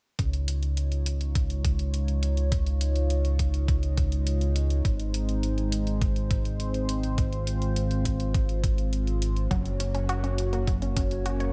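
Bright 1980s-style digital production with light reverb frames this uplifting, romantic synthwave excerpt, where a thick, saturated, detuned sawtooth bass sits up front under a shimmering, dark chorused pulse-width pad that pumps with sidechain and drifts through filter sweeps alongside the bass, while a thumpy, tape-warm sampler-style kick and electronic hi-hat keep a straight pulse and a lush, punchy unison pluck arrives at 9.5 seconds with ring-modulated, decaying arpeggios trailed by digital delay.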